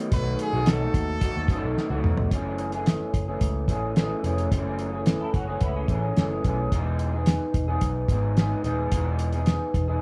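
Hazy and dreamy, this short bedroom-pop clip drifts along at 109 BPM in a straight 4/4, cut from a longer indie pop piece. A slightly broken-up, lo-fi electric guitar played through a small old amp sits up front, fingered and wobbling with analog chorus and warbly pitch drift. During the first 2.3 seconds it is joined by a very quiet, nasal sawtooth pad with a slow attack, and by a distant, roomy trumpet carrying a brief pop-style melody with light vibrato, subtle chorus and analog delay. A cloth-damped, thuddy drum kit with a fat snare and tight kick plays with a dry, rolled-off top, marking a fill at 1.8 s, while a foam-muted, round picked bass anchors the low end. At 5.2 s a second picked guitar adds a short line coloured by ensemble chorus and delay, as the harmony moves from B7 to F#m9 and then Emaj7, all set in a moderate studio reverb.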